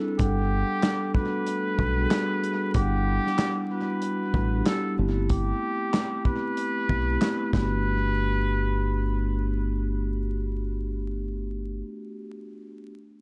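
An echo-heavy, dry mix dusted with vinyl crackle frames this nostalgic, confident boom-bap hip-hop cut, where mellow soft-mallet vibraphone chords with a cassette-tape tint ring out from the start, a distant, nasal straight-muted trumpet carries a breathy, scooped jazz melody with light vibrato until 9.7 seconds, a round, punchy fingered electric bass sits up front in the low register, and a dark, smooth soul drum kit of kick, snare, hi-hat and handclaps swings until 7.7 seconds.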